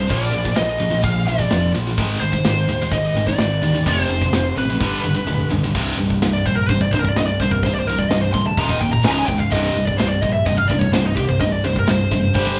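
A rough home-demo mix in a small, nearly dry room carries this dark, epic heavy metal excerpt in C minor at 127 BPM, where a bright, double-tracked high-gain guitar riff and a growling overdriven fingered bass drive alongside a big acoustic kit with boomy kick and bright cymbals, while a smooth overdriven lead guitar with tape echo sings up front and, after a drum fill at 4.8 seconds, takes a solo from 5.7 seconds to the end.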